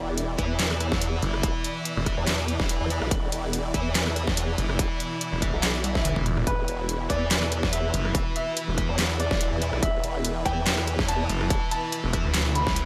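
Heavy wobble dubstep, chaotic and menacing, with a half-time swing: an up-front formant-sweep wobble bass and a snarling, growling distorted saw bass grind under punchy overdriven electronic kicks and a layered dubstep kit with a deep snare, handclaps, hi-hat, rim clicks and toms, while lush supersaw chords pump in the background, a double-tracked fuzz guitar stabs with 12-bit grit and tape echo, and after a drum fill and electronic swell near 5.9 seconds a clear, boxy baby grand piano enters at 6.5 seconds with an echoing melody.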